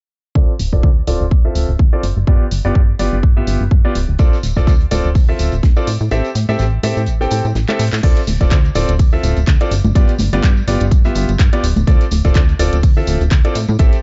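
Piano house at 125 BPM in D dorian opens at 0.4 seconds with a clear, natural grand piano riff over a plucky analog bass and a punchy, up-front electronic kick, the piano and bass both pumping with sidechain and both carrying a filter sweep through the first 8.0 seconds. The bass is funky and fast in attack, a decaying sawtooth-and-square tone with ring modulation and wave-folding, while a tape-warm, layered house kit adds crash cymbal, handclaps and hi-hat with a lightly swung sixteenth feel. At 4.2 seconds, close, dry tambourine and congas slip in behind, along with a very quiet, damped 70s kit whose fat snare and hi-hat have a rolled-off top. The chords move through Dm7, G7 and Am7, giving a bittersweet, soulful mood, and a break arrives at 6.1 seconds with a drum fill leading into the second section at 8.0 seconds. The production is dark and small-room in character, a cut from a longer piece that runs to 14.0 seconds.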